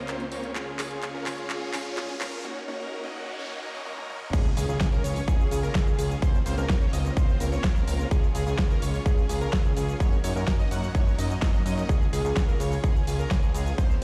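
Festival progressive house in Db major at 127 BPM, triumphant and euphoric, this cut opens on a build-up where a very quiet, woody kalimba plays a brief melody until 2.4 seconds over soft, smooth strings, a huge, detuned supersaw riff under a filter sweep, background risers and noise sweeps, and drum fills from an overdriven big-room kit with a huge snare, claps, hats, shaker and toms. At 4.3 seconds the drop lands with an impact as a punchy, up-front kick, a fat, nasal analog bass and a catchy plucky unison lead playing arpeggios arrive, the bass, lead and supersaw all pumping with sidechain and the lead and supersaw trailing delay. The mix is fairly dry, with a stone-room echo as if played through a big system in a bare space.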